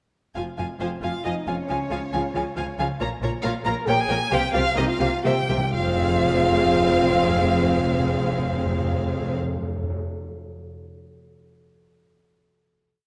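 Dramatic and restless, this short, complete classical-period movement for symphony orchestra moves quickly in 3/4 in F minor, with a rubato feel that slows down between 2.3 and 5.7 seconds. A rich, close chamber violin section carries the melody with expressive vibrato, doubling the tune at the octave, while a second, warm violin section with soft attacks and portamento adds repeated notes and sustained chords. A focused viola section fills in the harmony, and a smooth, even cello section and a bowed double bass section, which doubles the bass line, hold the low end in the background. A mellow, distant French horn section plays tight sustained chords in a classical style. Timpani with medium mallets on calf heads enter at 4.3 seconds, rolling into louder passages and playing a brief fill before the final F minor chord arrives at 5.7 seconds. The harmony moves from F minor through D-flat, B-flat minor and a C7 dominant, all set in a reverberant concert hall.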